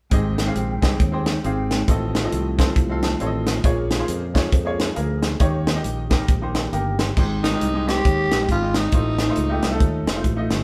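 This jubilant, uplifting uptempo gospel excerpt swings at 136 BPM in Ab major, with a crisp, up-front acoustic drum kit (tight kick, high-tuned snare, hi-hat and crash) and a punchy, growly fingered electric bass driving it. A clear, short-sustain baby grand piano comps and drops in fills, while a very quiet, flute-like tonewheel organ with key click and rotary speaker holds soft sustained chords until 7.2 s. A breathy, raspy tenor saxophone then takes a gritty, growling jazz solo from 7.4 s, all heard in a live-room sound with moderate reverb and faint mains hum.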